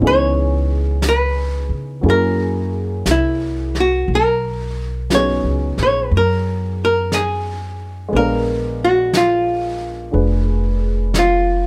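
A slow, melancholic jazz ballad at 60 BPM opens with clean, picked hollow-body electric archtop guitar carrying the wistful melody up front, over mellow upright piano chords, woody pizzicato upright bass and a brushed kit with a fat snare and rolled-off top. The gentle 4/4 swing moves through Dbm9, Gb7 and B69 before settling on Bb7b9. The sound is dry and intimate, with little reverb, in this 11.7-second cut from a longer piece.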